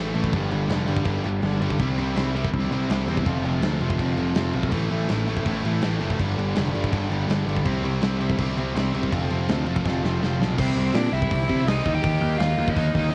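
This rowdy, energetic punk rock excerpt opens with a wall of guitars and bass, played straight in 4/4 at 164 BPM in C major. A crunchy overdriven guitar, a heavy high-gain guitar that is double-tracked, and a sludgy distorted guitar all grind out riffs in the background, while a growling picked electric bass sits up front with a bright, overdriven edge. A big rock drum kit comes in at 0.2 seconds, sounding dark and smooth with a punchy kick, a medium-tuned snare, hi-hat and crash, a rolled-off top end, and a cassette tape coloring. The chords cycle through G, C, F and A minor until a drum fill at 9.8 seconds leads into a new passage at 10.6 seconds. There a biting lead guitar enters with an overdriven, tape-colored melody over a shift from C to E-flat, while the sludgy guitar drops out at 11.1 seconds. The whole thing has the dry, raw feel of a home recording on cassette with little reverb.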